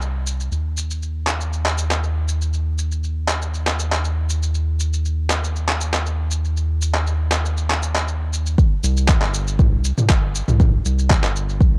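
A straight afro house groove opens on a deep house kit of handclaps, shaker and toms, tape-softened and close, with a round, mellow analog bass that pumps against the sidechain and shifts its wave-folded tone as it sustains low underneath. At 8.6 s the drop arrives as a deep, layered electronic kick enters up front, grounding the spiritual, earthy mood through to the end of this fragment of a longer piece. The dry, intimate sound carries the character of a home cassette recording.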